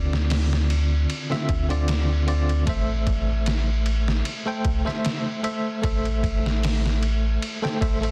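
Hypnotic and dark, this trip hop excerpt moves at 76 BPM with a light swing, drifting from Dm7 to Am at 2.7 seconds. A bell-like tine electric piano carries the accompaniment with tremolo, tape echo and a gritty 12-bit sampler texture, over a round, deep analog bass with a fast attack and sustained notes. A pitched-down, muffled sampler-style drum kit sits up front with a thumpy kick, medium-tuned snare, hi-hat and ride cymbal, overdriven and compressed, all set in a digital ambience with a dense, heavily limited modern master.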